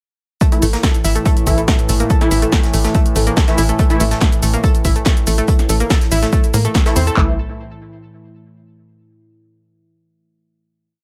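Industrial and intense, this driving peak-time techno piece runs as one long drop: an overdriven analog drum machine pounds a punchy four-on-the-floor kick with claps and floor toms up front, a second overdriven machine supplies the snare backbeat, shaker and open and closed hats, and a brushed acoustic kit plays a looped, edited breakbeat in the background. A tight, off-beat sequencer bass, a round, bright analog pluck cycling a 12-step loop that drifts against the bar, and a slow-attack analog drone with pulse-width movement all pump with sidechain. Thick, detuned rave stabs with ring modulation and cassette-tape grit fire sparse echoing chords in one parallel shape, dropping out at 4.0 seconds and returning at 6.9 seconds before a final chord from 7.2 seconds.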